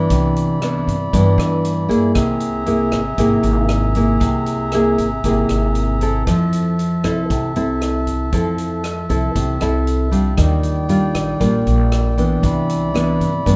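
Relaxed and breezy, this short bossa nova excerpt moves at 117 BPM in a straight 4/4 feel in C major, tuned slightly low with A4 at 435 Hz. Up front, a dark, full-bodied nylon-string guitar carries the accompaniment in a fingerpicked classical style, with finger squeaks audible along the way. Behind it, a hand-pumped harmonium holds sustained chords with a reedy, breathing, vintage tone that sounds band-limited and mellow. A woody upright bass with steel strings plays pizzicato underneath, while a swinging big-band drum kit enters at 0.1 seconds with hi-hat, rim click and a boomy kick, set in a big, natural-sounding room. The harmony drifts from Cmaj9 through Caug7 and Fmaj7 to Ebmaj9 before returning to Cmaj9 near the close, all in a dry mix with little reverb.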